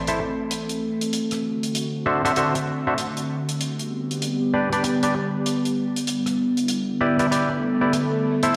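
Funky and gritty, this short glitch hop cut at 97 BPM rides a swung 16th-note feel over a chord cycle of Am, D7, G and Em7. A warbling, nostalgic pad with detuned, lo-fi sampler grit sustains dark chords alongside a stringy, overdriven clav playing percussive stabs through a low-pass filter and dub echo, while a dry, damped 70s drum kit sits lower in the mix with hi-hat and rim click. An electronic impact opens the passage and a swell arrives at 7.6 seconds, all set in a lush hall reverb that sounds as if played through a big sound system in a bare room.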